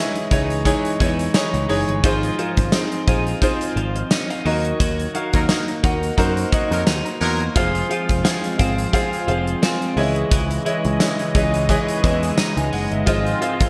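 A lightly swung 87 BPM groove in 4/4 from a gated 1980s drum kit, with tight kick, medium-tuned snare, hi-hat and tambourine in gated reverb, drives this nostalgic, glossy 1980s-style pop passage cut from a longer piece, while a punchy picked electric bass holds down the low end. An up-front, clear concert grand piano with deep bass and subtle chorus carries the accompaniment over chords moving from Dbmadd9 through Ab6, Ebm and Fm, and a compressed, clean twelve-string electric guitar plays a riff through analog chorus and delay. A loose horn section with light vibrato punches out stabs from 5.3 seconds within a band accent spanning 4.8 to 7.6 seconds, and from 7.6 seconds a detuned sawtooth analog pad with a soft attack and chorus sustains chords in the background, all within bright digital production and moderate plate reverb.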